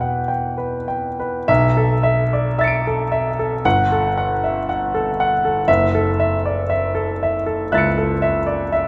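A clear, polished concert grand piano plays alone and up front, its deep bass and audible action noise giving this short impressionist classical passage, cut from a longer piece, an intimate, mysterious, nocturnal air. The playing moves in rubato 4/4 at roughly 49-60 BPM in B minor, spanning F#1 to D7 and drifting through Em, Bm11, Gsus2 and F#m7 chords. A moderate concert hall reverb with a 2.1-second decay surrounds the instrument, and a new section begins at 1.5 seconds.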